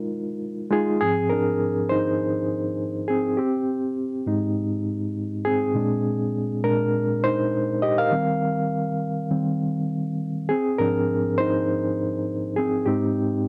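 Dry and close in a 1970s studio manner, this smooth, warm soul excerpt at 101 BPM in 4/4 with a light sixteenth-note swing features a solo reed electric piano, reedy and lightly overdriven through its built-in speakers with a fast tremolo, sitting up front as it moves from a Bb7sus4 opening into a passage from 1.0 seconds over Ab6, Abmaj7, Bb9 and Eb69 chords, ranging from Ab2 to F5 until 13.5 seconds.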